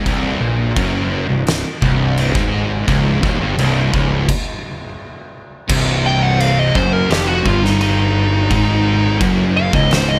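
This sludgy, ominous stoner and doom metal excerpt opens with two dark, thick fuzz guitars and a bright, scooped, double-tracked distorted guitar riffing in the background over a growly, overdriven fingered bass and an oversized, low-tuned drum kit with a boomy kick, fat snare and dark cymbals pumping in a stone room; everything stops at 4.3 seconds, the band returns at 5.7 seconds on a C minor chord, and a warm, distorted fuzz lead guitar with digital delay takes an up-front solo from 6.1 seconds, all under light reverb.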